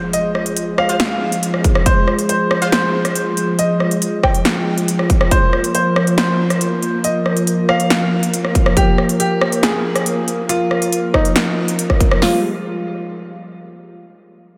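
A punchy, up-front electronic drum kit with kick, snare and crisp hats drives this menacing, aggressive half-time wobble dubstep excerpt, entering at 1.6 seconds and dropping out through the middle before returning. Beneath it, a second tape-colored kit of hi-hat, rim click and snare runs throughout. A clear, worn grand piano carries the melody through tape echo over a thick, warbling detuned unison pad with chorus and sidechain pumping, while a very quiet, bright orchestra-hit-like stab flashes briefly near the start, the mix soaked in huge, dreamy reverb.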